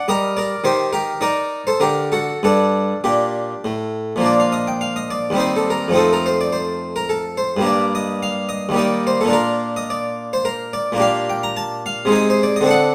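Radiant and flowing, this brief excerpt from a longer baroque-style suite movement unfolds in triple metre with a supple, rubato feel, its harmony turning from minor toward the relative major at 4.2 seconds. A solo harpsichord of the Flemish type carries everything, its plucked tone brilliant and enriched by octave strings, placed up front across a range from deep bass to high treble. A wet stone room lends a resonant reverb with a one-second tail around the instrument.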